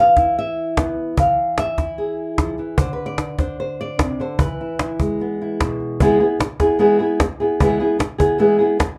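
A fingerpicked acoustic flamenco guitar leads up front, carrying a mournful, passionate melody in E phrygian dominant at 149 BPM, with its harmony moving from E to Csus2 and back to E. A woody cajon with faint snares joins at 0.2 seconds, sitting close, dry and up front in straight 4/4 time. The production is dark and warm, with a moderate small-room reverb, and the recording is a brief section cut from a longer piece.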